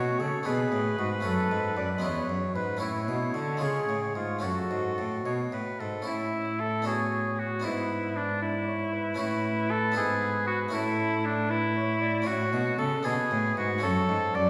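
Heard in the roomy reverberance of a recital hall, this flowing, dance-like baroque-style sonata excerpt moves in a rubato 6/8, setting a mellow, punchy trumpet melody at a distance against a clear, up-front oboe second line with light vibrato, while a bright, plucked Italian-style harpsichord accompanies and a rich, smooth, bowed solo cello carries the bass close and even throughout.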